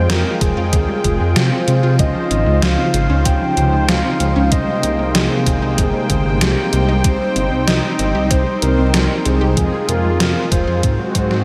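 A moody, driving synthwave passage at 95 BPM in 4/4 opens on a soft, round octave-layered synth lead carrying the melody between G4 and G5 with chorus, delay and shimmer reverb, over a smooth, full-bodied analog pad with sidechain pumping, a very quiet, lush unison pluck playing arpeggios, mellow brassy stabs sitting in the background with tape echo, and a deep, rumbling detuned saw bass up front. A sampler-style 80s drum machine adds hi-hat and an overdriven snare with gated reverb at 0.1 s, and a thumpy, overdriven electronic kick joins at 0.4 s. The chords move through Fmadd9, Dbmaj7, Abmaj7 and Cm, returning to Fmadd9 before an Ab7, all in a dreamy mix soaked in huge ambient reverb, cut from a longer piece.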